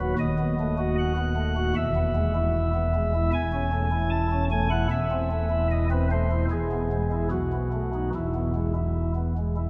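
Soft flute stops on a solo pipe organ open this majestic, reverent chorale-style classical piece in E major, moving at 76 BPM in a straight 4/4 and ranging from deep pedal notes up into the treble. The baroque voicing has a gentle chiff at the start of each note. The organ sits up front yet is heard from further back in a cathedral whose long reverb lets the harmony, with a brief turn to A minor, ring out until the cut at 9.7 seconds.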